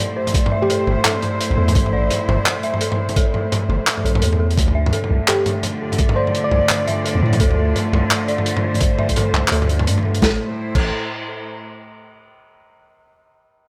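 A crunchy, gritty breakbeat kit with dark cymbals, handclaps and toms drives this dark, tense half-time drum and bass at 170 BPM in A minor, joined by an overdriven, knocking electronic kick, a deep sine 808-style bass with tube saturation from 0.9 s, distant bowed chamber cellos holding smooth sustained chords under sidechain pumping, an eerie detuned FM synth bell playing arpeggios through chorus and digital delay, and brief sparkling electric piano melody phrases at 0.6 s and 5.3 s, set in a small room with light reverb as the harmony moves from Am to Dm and back.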